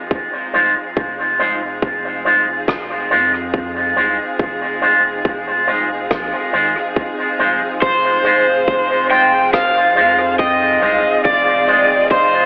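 A rich, bowed string section fades in from the very start, holding smooth, vibrato-laden sustained chords over a single minor-seventh harmony in this deep, meditative stretch of ambient dub, cut from a longer piece. A tight electronic kick sits up front with the roomy ring of a large space, while a round, soft sub bass hums far beneath, and the rhythm carries a gentle swing. A dark, clean electric guitar run through an envelope filter plays picked stabs up front, each one trailing dub echo, and from 2.7 seconds a natural, hall-toned rim click ticks in the background with echoes of its own. At 7.8 seconds an overdriven slide guitar steps forward with a high, singing melody, its fingered tone colored by warm grit and dub echo. A wet spring reverb and a narrow, telephone-like filtering give the whole mix a hazy, lo-fi cast.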